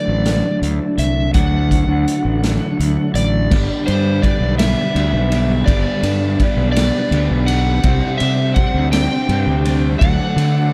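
Psychedelic rock at a slow 56 BPM in a swaying 6/8, this short cut from a longer piece feels kaleidoscopic and hypnotic. A bright, twangy twelve-string electric guitar carries the riff, double-tracked and swirling through a rotary speaker with dub echo, while an overdriven slide guitar sings the melody above it, its tone trailing off in dub echo of its own. Underneath, a fuzz-laden fingered electric bass sits punchy and up front, and a vintage drum kit with a punchy kick, medium-tuned snare and dark cymbals comes in at 0.3 seconds, sounding roomy and distant with a rolled-off top. A reedy combo organ with light vibrato holds sustained chords in the background. The harmony rests on D before moving to G at 3.5 seconds and Csus2 at 7.8 seconds, then returns to D, all wrapped in an echo-heavy small-room mix.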